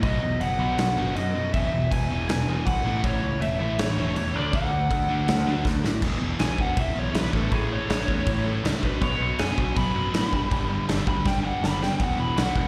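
Rebellious and rowdy, this punk rock excerpt opens in half time with up-front acoustic drums from a bright stone room, punchy kick and crashing cymbals driving a growling, overdriven picked bass, a double-tracked distorted guitar riff and two sludgy overdriven guitars buried in the background, while a lo-fi lead guitar through a small cranked amp, colored by slapback echo and digital delay, carries the melody before breaking into a solo at 6.0 seconds after a quick drum fill, all heard as a live gig through the venue's PA with recital hall reverb.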